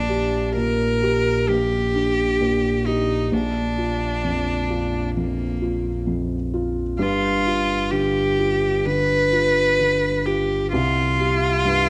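A single bowed cello sits up front, its warm, airy tone played sul tasto with a soft attack and light vibrato, carrying a close, intimate second line through this fragile, melancholic fragment of a longer neoclassical piece for piano and strings. Beneath it, a felt-muted upright piano supplies the accompaniment, its thick felt lending a mellow, dark, boxy colour that stays soft and hushed. A deep sine sub bass, doubled at the octave, holds sustained low notes with a fast attack, filling out the bottom of the texture. The three parts play together from start to finish across the roughly 11.9 seconds, moving in a loose, rubato 4/4 through a short progression from Gm/Bb to Bb, then G7, landing on C5 at 10.7 seconds. A moderate echo chamber reverb surrounds the ensemble, giving the intimate playing a gentle sense of space.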